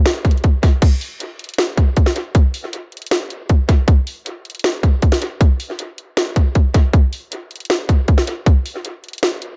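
An electronic trap drum kit carries this brief, eerie hip hop fragment, playing from 0.1 to 9.5 seconds in a half-time feel. Its hard-clipped kick and sharp snare sit up front, joined by warm hi-hats and a crash cymbal. A dub echo trails the kit and gives it a dark, haunted quality. The mix is steeped in echo, with light reverb and a digital ambience, and its top end is muted. Cut from a longer piece, it feels like a single stretch of a larger, brooding track.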